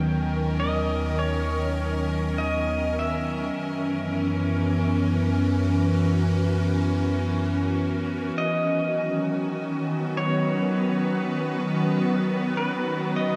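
A bright, detuned wavetable pad holds slow-blooming chords up front from the start, over a round sine sub bass, a warbling vintage sawtooth drone in the background and a clean, fingerpicked electric pedal steel whose slide melody carries delay and volume swells, the whole peaceful, weightless ambient passage cut from a longer piece and set in a vast, echoing cathedral space until the sub bass falls away at 8.3 s as the harmony settles on B.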